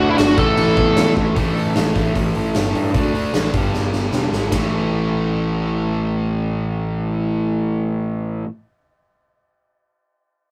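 Powerful and energetic, this short hard rock excerpt drives ahead at 152 BPM in a straight 4/4, taken from a longer piece and captured as a rough rehearsal-room recording with light reverb. A biting, overdriven lead guitar with tape echo carries a brief melody between E4 and A4 over the opening 1.1 seconds, shadowed by a very quiet, compressed fuzz lead guitar playing a second line. Underneath, two picked rhythm guitars hold the riff through 8.5 seconds, one crunchy and sitting in the background, the other distorted and brighter. A growly, fuzzed bass sits up front, its overdriven tone anchoring the low end until 8.4 seconds. The big acoustic drum kit, with a punchy kick, medium-tuned snare and the sound of a stone room, enters at 0.2 seconds, throws in fills around 1.2 seconds and from 3.7 to 4.5 seconds, then drops out at 4.6 seconds. Power chords on A5, D5 and G5 shape the harmony, returning to A5 at 4.5 seconds as the final section begins.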